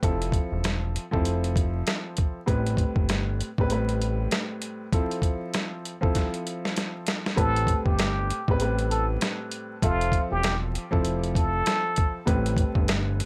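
Vinyl crackle and a light reverb frame this short, tough and moody boom-bap hip-hop clip, cut from a longer piece and set in A minor at 98 BPM with a 60% swing on the sixteenths. A gritty, compressed, sampler-style drum kit sits up front, pitched down and re-recorded in a small room, with a thumpy kick, a medium-tuned snare and hi-hat. A fat analog bass holds the low end between E1 and A1, its detuned sawtooth and square tones saturated, with a fast-attack filter pluck that then sustains. A dark, woody upright piano with a vintage, mellow character carries the accompaniment, moving between Fmaj7 and Am9. After a drum fill from 6.2 seconds, a trumpet with a plunger mute enters at 7.4 seconds for a jazz-style solo lead. Its clear, wah-wah tone with light vibrato stays between F4 and A4, trailed by tape echo until 12.2 seconds.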